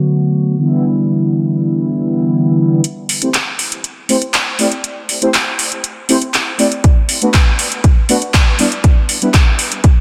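A mellow, round sawtooth synth brass opens this cosmic, groovy nu-disco excerpt at 120 BPM in A dorian, its soft-attack chords moving through Bm7, Em7 and Am7 with chorus, gritty 12-bit sampler texture, sidechain pumping and dub echo, before handclaps and metallic hi-hats from a house kit arrive at 2.8 s to begin a build-up, and a punchy, tape-toned electronic kick joins up front at 6.8 s, all set in a moderate plate reverb under a dense, heavily limited master.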